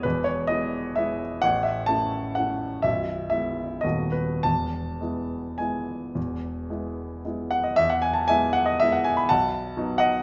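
A baby grand piano, natural and up front with short sustain, plays a sparkling, graceful classical waltz in E major alone, its rubato tempo ranging from 94 to 139 BPM in 3/4 over E, A and B7 harmonies in a moderate recital hall reverb, with a new section arriving at 7.8 seconds before this fragment of a longer piece stops at 10.2 seconds.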